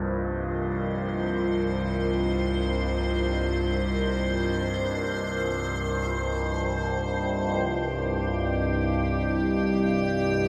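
An up-front, resonant drone sits low in the register, its moving overtones shifting slowly beneath a deep, warbling pad that holds sustained C minor chords in this vast, ominous dark ambient passage in free time, cut from a longer piece. A crystalline, airy glass pad enters at 0.7 s, adding a bright, ring-modulated shimmer above the others, and the music moves into a new section at 7.6 s. Each part carries chorus, and the whole sits in a wet cathedral reverb with a long 5.3-second tail.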